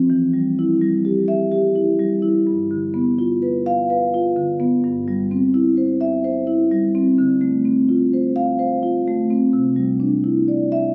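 In a rubato 5/4 at 127 BPM, this short contemporary classical excerpt for solo marimba flows in C major, moving through Em, G7, C/G and Dm7 before settling on Cadd9 near 9.5 seconds. The marimba, played with soft mallets and heard up front across its full 10.9 seconds, has a mellow, round, dark tone with a warm, flowing mood. It is captured on a phone in a recital hall with moderate reverb, with club reverb and compression also applied.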